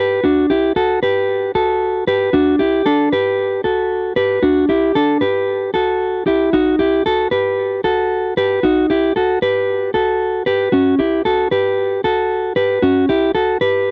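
A mellow, clean electric guitar plays alone from the start, fingered and up front with a dark tone, carrying a bittersweet, wistful indie pop mood in a straight 4/4 feel. Its line stays in a narrow middle register over a chord path that moves from Bm to B7 at 6.5 seconds and on to F#m at 10.7 seconds. Light reverb sits on the guitar within a dry, close recording that has the intimate character of a 1970s studio, and the passage is cut from a longer piece.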